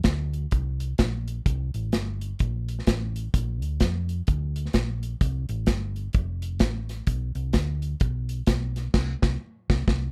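An up-front acoustic drum kit plays through this hopeful, uplifting uptempo gospel clip cut from a longer piece, its small-room sound smooth and rolled-off on top, with a tight kick, medium-tuned snare, hi-hat and crash driving a swung 4/4 at 128 BPM. A fingered hollow-body short-scale electric bass sits close beside it, its amped tone dark, round and punchy as it moves between F1 and F2. The rough home-demo mix is dry, and the band hits an accent together at 8.9 seconds.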